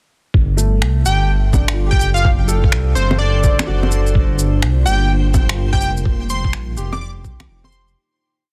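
A swung, skittering two-step groove of muffled, thumpy kick, electronic shaker, finger snaps and bongos drives this melancholic, nocturnal future garage piece, where a rumbling, detuned saw bass carries a dub-style line up front, a worn, woody upright piano scatters notes through 12-bit grit, tape echo and a filter sweep, a punchy sawtooth lead plays catchy short phrases with digital delay from 1.1 seconds, a moody chorused pad of held chords enters at 3.2 seconds, and a reversed, granular high note hangs in the background before the dense, heavily limited mix fades out from 5.4 seconds.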